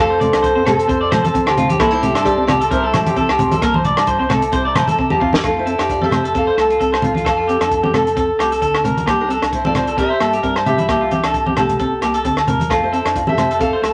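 Opening on an F chord that shifts to Cadd9, this joyful, cut-from-a-longer-piece highlife guitar band groove at 132 BPM with a light sixteenth-note swing sets a dark, fingerpicked steel-string acoustic guitar melody over an up-front, clean picked electric guitar accompaniment, a second clean, fingered electric guitar playing arpeggios, a round, punchy fingered bass and a soft, flute-like tonewheel organ on slow rotary speaker in the background, while a dry cocktail drum kit with a high-tuned snare, thick-skinned congas and ringing agogo bells join almost at once, and the organ drops away at 5.4 seconds after a short drum fill as the band plays on in a reverberant studio space.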